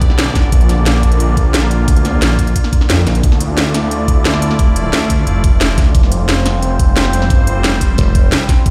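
A straight 4/4 pulse at 177 BPM drives this tense, futuristic dark technical drum and bass cut in D minor, where a knocking electronic kick (briefly dropping out from 2.9 to 3.2 seconds) and a kit of cracking snare and crisp hats, both re-recorded in a small room, push beneath a thick, detuned sawtooth bass with sidechain pumping, while a bright, warbling vintage pad with a resonant filter swell sustains chords moving from G and Bb to Dmadd9 and Fsus2, and a saturated, heavy pulsing pluck wobble bass punches in at 8.0 seconds, all carried by light digital ambience and the stone reverb of a bare room on a big sound system.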